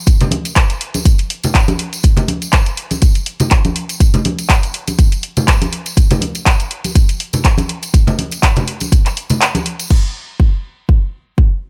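Sensual and sleek, this nu-disco excerpt is built entirely from rhythm, set in 4/4 with a light swing on the sixteenths. An electronic kick drum sits up front, punchy and layered, with a touch of studio reverb. A produced house drum kit plays alongside it from the start, its bright hi-hats, handclaps and crash cymbal placed just as close and also given studio reverb. Tambourine and congas add a ringing acoustic layer that sounds as if captured in a small room. The kick drops out briefly at 9.4 seconds, and once the kit and hand percussion finish around 10.0 seconds, the kick carries the closing passage alone until 11.5 seconds. The overall sound stays fairly dry and close.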